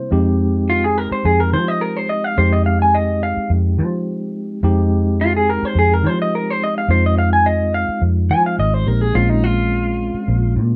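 A clean tine electric piano and a round, foam-muted vintage electric bass open this mournful, brooding blues fragment, lifted from a longer piece, in a straight 4/4 feel. The bass sits up front with a dark, amped tone, while the electric piano plays accompaniment through its built-in speakers. At 0.7 seconds an electric guitar through a small old amp joins with a second line, its fingered sound slightly broken-up, compressed and lo-fi, also placed up front. The harmony rests on Fm7 before moving to Bbm7 at 9.2 seconds. A light reverb gives the recording a modest sense of room.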